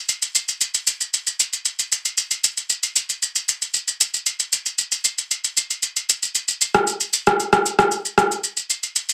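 The rhythm sits in a straight 4/4 at 115 BPM, carried by an electronic shaker and rim click that come in at 0.1 seconds and run through to the close at 9.1 seconds. This short cut from a longer amapiano piece has a late-night, soulful mood. The percussion is produced and electronic, yet it was re-recorded in a small room, and it sits up front in the mix. A light reverb colours the space. The overall sound is dense and heavily limited, in the manner of a modern master.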